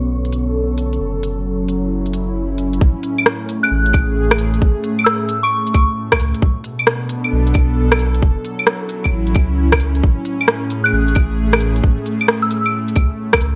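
Melancholic and nocturnal, this future garage excerpt from a longer piece opens on a breathy, detuned pad under a filter sweep, with a round sine sub bass and a faint wind-like noise texture that drops out at 2.8 s. At that point a tight electronic kick joins the smooth hats, claves and rim clicks of the up-front organic electronic kit, swung on the sixteenths, while both pad and bass pump to the sidechain through Bm7, F#m7 and Amaj7 chords. A pure, warbling FM bell melody with chorus and delay floats in high above, first at 3.6 s and again at 10.8 s, all set in light reverb.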